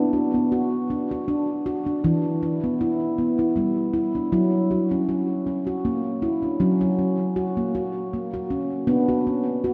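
World meditative music with a hypnotic, gentle mood, this short excerpt from a longer piece features a solo handpan at 79 BPM in a lightly swung 3/4, its ringing, dark nitrided-steel tone sounding up front under soft fingertips and trailed by a diffuse ambient delay, all set in F# phrygian dominant and drifting through Bm, Em and F# inside a lush hall reverb that leaves the mix dreamy and soaked.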